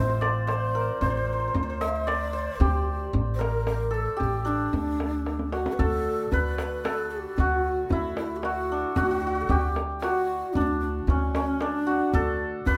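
Persian modal ensemble music at 113 BPM in a festive 3/4, where a bright, shimmering santur carries the melody up front, a breathy low ney with vibrato and a chiffy attack plays a second line, a woody pizzicato upright bass anchors the low end, and a deep, soft-handed tombak enters at 0.2 s with a warm vintage tone, all in a small room, before a drum fill at 5.3 s ushers the music from D dastgah shur into D dastgah mahur at 5.8 s.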